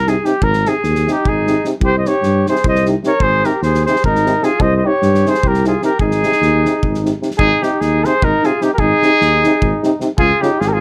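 Festive and virtuosic, this short Balkan brass band excerpt in 7/8 at 301 BPM in Ab major sets an up-front, mellow, punchy trumpet melody over a dark, smooth-topped tuba bass. Two background euphoniums, one clear and one soft-attacked with light vibrato, fill out the accompaniment, while a loose acoustic drum kit with a punchy kick and rolled-off top drives the rhythm. A close-miked flugelhorn with vibrato and scooped notes enters at 1.1 seconds as a second line, and the band moves into a new section at 7.4 seconds under light reverb.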